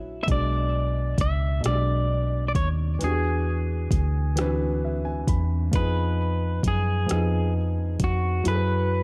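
A dry, dark mix frames this sultry, late-night slow R&B fragment in 6/8 at 44 BPM, set in B dorian and moving through chords such as Bm69 and E9. A round, foam-muted vintage electric bass sits up front beneath an intimate grand piano whose action noise is audible, while a clean, compressed electric guitar carries the melody through tape echo from 0.2 seconds. A produced electronic drum kit with a soft kick, metallic hi-hats and rim clicks enters at 0.3 seconds, and the piano adds a fill from 4.4 to 5.7 seconds.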